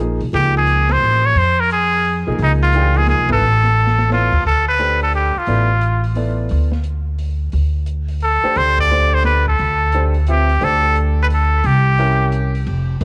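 A nasal, breathy trumpet with a straight mute carries the melody up front from 0.3 seconds, its vibrato sitting in a tape echo, while a woody pizzicato upright bass anchors a grand piano's accompaniment in this searching, spiritual modal jazz fragment cut from a longer piece, swinging in 3/4. An open jazz drum kit with dark cymbals and a boomy kick stays in the background, punctuating band accents and a brief fill before the harmony shifts at 4.5 seconds. The trumpet drops out at 6.1 seconds and returns at 8.2 seconds. The homemade cassette sound, with its vinyl crackle and small-room ambience, gives the piece an intimate, aged character.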